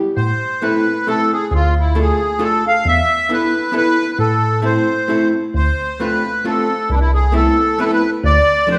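A wet, church-like hall reverb wraps this whirling, nostalgic musette waltz excerpt in A harmonic minor at 134 BPM, where a sweet, reedy accordion with light tremolo tuning carries the melody up front, a bell-like tine electric piano with phaser plays the bass, and a dark, hollow-bodied archtop guitar enters at 0.6 s with clean picked accompaniment through chords moving from Am to Dm, E7sus4 and Amadd9/C.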